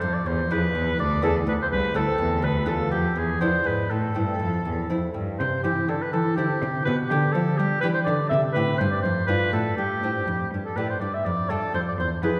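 A steady 6/8 at 82 BPM carries this serene, dance-like baroque-style sonata movement in A minor, turning to C major at 5.4 s, with a warm oboe singing the melody up front with light vibrato, a bright, fingerpicked lute on paired gut strings offering delicate accompaniment, and a clear, smooth bowed cello holding the bass, the ensemble heard from further back in a concert hall's long, wet reverberation.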